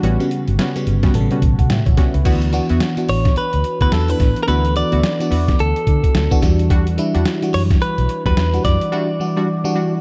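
This upbeat, flirty new jack swing excerpt opens at once on a glassy, bell-like FM electric piano, up front and shimmering with chorus and phaser, over an A13 chord. Punchy sawtooth polysynth stabs with a filter sweep and chorus add funky color in the middle register. Beneath them, a round, foam-muted fingered electric bass sits dark and amped, while a gritty, pitched-down sampler-style boom bap kit drives the groove with a thumpy kick, medium-tuned snare, hi-hat and crash. The tempo is 108 BPM in 4/4 with a 16th-note swing, and the harmony moves to D69 at 2.3 seconds and Em9 at 6.4 seconds in D major. At 3.1 seconds a clean, picked electric guitar, recorded direct and compressed, enters with a melody touched by tape echo. The dark, warm production is wrapped in light digital reverb, and the excerpt is cut from a longer piece.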